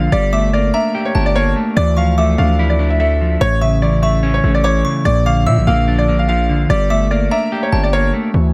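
A bright concert grand piano carries the melody from the opening moment, its brilliant tone trailed by analog delay, while a clean, dark electric guitar and a heavy, saturated 808-style bass with an aggressive distorted edge set a menacing half-time hip hop mood. From 0.3 seconds a delicate, tinkling synth tine bell adds a quieter second line, its chorus and delay shimmering high above the other parts. Moving from Gmadd9 through Dmadd9, A and Bb before returning, this dark, echo-heavy fragment of a longer piece keeps the room dry and the piano, guitar and bass up front.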